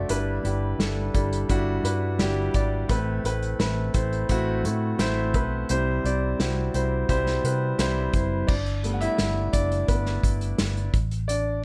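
A straight, steady 4/4 groove drives this uplifting, piano-driven pop excerpt, carried by an acoustic drum kit played with bundle sticks in a studio room, with a medium-tuned snare, a punchy kick, hi-hat and crash cymbal sitting up front in the mix. Underneath, a vintage fingered electric bass with a dark, foam-muted, round tone comes through an amp and anchors the low end. The grand piano is the warm heart of the track, playing accompaniment with an open sound and long sustain, placed prominently alongside the drums. The harmony moves from G6 through Amadd9 and C before settling on Gadd9. At 8.5 seconds the piano steps forward for a solo while the bass and drums continue, and the chords drop out at 10.9 seconds. A light reverb gives the whole a gentle sense of space, and the passage is cut from a longer piece.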